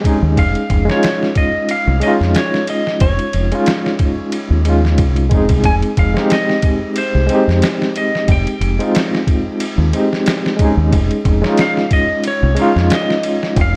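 A dark, warm production with light reverb and a bed of vinyl crackle sets a brooding trip hop mood in this short cut from a longer piece, moving in 4/4 with a gentle swing on the sixteenths. An overdriven reed electric piano, reedy and barky with a gritty edge through a combo amp, carries the accompaniment up front with a tremolo shimmer, moving from Dbadd9/F to Fm9 and back. A sampler-style drum kit sits in a small room, compressed, pitched down and muffled, with a thumpy kick, a medium-tuned snare and ride cymbal. The deep dub bass enters at 0.2 seconds, round and punchy, and is the loudest part in the mix. From 0.4 seconds a clean lap steel guitar takes the melody high above, its slide and volume swells trailing tape echo.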